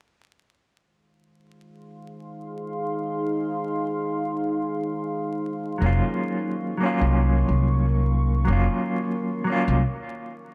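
In free time, this smoky, dark trip hop fragment in F phrygian opens on a deep, detuned sawtooth pad with chorus holding sustained chords from 2.0 s, shifting from Fm7 to Ebm7/F as a woody, thumpy pizzicato upright bass and a mellow, clean fingered electric guitar with tremolo, tape echo and gritty 12-bit sampler texture enter up front at 5.8 s and stop at 9.8 s, leaving the pad alone in a brief break, the whole set in warm production with light reverb, studio ambience and vinyl crackle.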